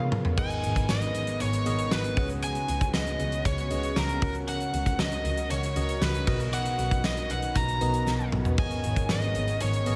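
An overdriven lead guitar sings the melody up front over a bright, clean tine electric piano with phaser and a shimmering, ethereal pad, while a big rock kit with gated reverb crashes in with a fill in this moody, dramatic excerpt of 1980s-style pop at 117 BPM. At 0.4 seconds a bowed double bass enters with a soft, floating tone, joined by dark, detuned synth brass stabs with chorus and delay in the background and a grainy egg shaker barely audible beneath the punchy kick and fat snare. The harmony moves from Abmadd9 through Db7sus4, Gb/Db and Bmaj7, and another drum fill at 8.1 seconds leads back to Abmadd9, all set in light small-room ambience.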